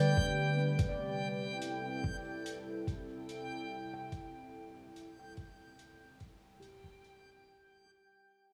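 Opening at once on a detuned sawtooth pad with chorus, a ringing handpan playing arpeggios through gritty 12-bit sampler crunch, low-pass filtering and dub echo, and a reversed, granular texture swelling brightly on a held G5, this hazy, spacious ambient dub fragment in A minor at 72 BPM moves from G to Am7 as a muffled, pitched-down, thumpy electronic kick arrives up front at 0.2 s and a saturated acoustic hi-hat with a rolled-off top and dub echo joins at 0.8 s, all inside a moderate echo-chamber reverb while the passage fades out over its 7.5 seconds.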